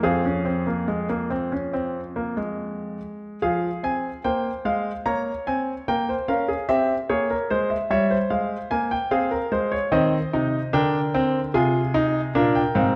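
A clear, intimate grand piano plays a stately, elegant baroque-style four-part fugue in F minor at 74 BPM, its polished, up-front tone carrying audible action noise through a wet recital-hall reverb in a dark, warm production in this 13-second excerpt cut from a longer piece, moving from Fm through Bbm and C to settle on Fm/C.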